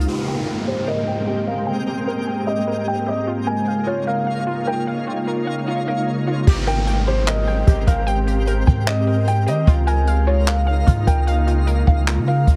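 Heard through a small room and squeezed into a heavily compressed, radio-like sound, this excerpt of atmospheric cloud-rap feels dreamy and blissful, moving at 150 BPM in 4/4 with a half-time feel in Ab major. A glassy FM pad holds ethereal sustained chords, alternating between Abmaj9 and Db69, and a warbly, dusty lo-fi pluck spins detuned arpeggios through chorus, phaser and tape echo. A twinkling granular texture adds an octave-up shimmer, while a soft, felt-muted upright piano carries an intimate melody high in its register, dulled by a low-pass filter and tape echo. A filter sweep moves across the opening stretch, and an electronic downlifter appears twice. At 6.5 seconds a deep, clean 808-style sine bass and an up-front jazz brush kit, with boomy kick, handclaps, hi-hat and dark crash cymbal, arrive, while the pad keeps its sidechain pumping until the cut at 12.6 seconds.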